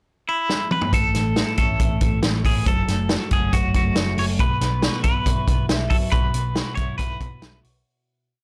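A bright, twangy clean electric guitar opens at 0.3 s with hook phrases colored by tremolo and slapback echo, and a fill on a punchy, up-front vintage drum kit leads into a youthful 138 BPM jangly indie pop verse where a compressed twelve-string electric guitar rolls fingerpicked arpeggios through lush chorus and slapback echo, a dark, foam-muted picked bass drives eighth notes under A, F#m and Bsus4, and the blown-out, overdriven recording with light reverb fades out from 6.1 s.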